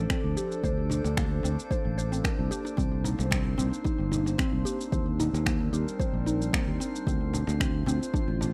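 A rough home-demo sound with digital ambience and a faint mains hum frames this short, hypnotic and mystical organic downtempo excerpt in a lightly swung 4/4. A warbling, nostalgic tape-like pad holds sustained chords through chorus, phaser and its own reverb, pumping against the sidechain, while a glassy texture of drifting sine overtones floats calmly above it. Up front, a dark, round fretless electric bass carries the low end with the same pumping motion. A woody, mellow mallet-like synth pluck spins arpeggios in the background through chorus, phaser and delay. A punchy, overdriven electronic kick and overdriven electronic finger snaps and shaker drive the groove from 0.1 seconds, and a woody, band-limited cajon with faint snares joins in the background from 0.6 seconds. The harmony moves from Dm7 through Bbmaj9/D, Cm9 and Ebmaj7 before returning to Dm7.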